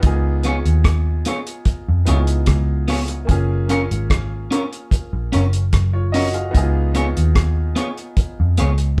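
Recorded as a live band in one room with moderate studio reverb, this tender, smooth lovers rock reggae excerpt pairs a dark, cloth-damped drum kit of tight kick, hi-hat and rim click with a round, foam-muted picked bass up front, while a slightly broken-up, compressed electric guitar adds stabs from 0.4 to 8.7 seconds and a clear, boxy baby grand piano with tape echo sits further back over a C#7 to F#maj7 progression.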